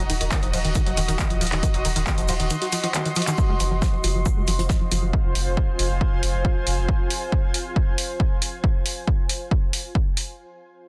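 Dark and intense, this short cut of driving peak-time techno at 137 BPM in F phrygian opens on a drop over Ebm, with a punchy, tape-warm electronic kick up front, a punchy analog drum machine of handclaps, hi-hat and ride, a dry, polished 70s kit with a fat snare, hi-hat and shaker sitting in the background, a thick, saturated sub bass with overdrive, a cloudy, evolving granular pad with built-in reverb, and a tight, detuned sawtooth riff with chorus, phaser and delay that gets a filter sweep from 3.4 seconds as the harmony moves to Fm, the sub bass, pad and riff pumping together in a small room under a dense, heavily limited master.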